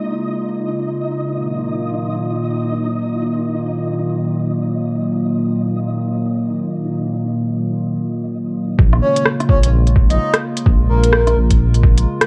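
Swung sixteenths drive this rainy, wistful future garage passage cut from a longer piece, where a warbly, nostalgic tape-like pad pumps under sidechain as it sustains chords beside a faint, flickering grainy texture until 8.8 seconds, when a muffled, thumpy kick and a deep, rumbling detuned saw bass arrive, followed at 8.9 seconds by an up-front electronic kit of crisp hi-hats and rim clicks, then joined at 9.0 seconds by a breathy, flute-like synth lead with vibrato and tape echo, the whole recording colored by cassette tape and a moderate room reverb.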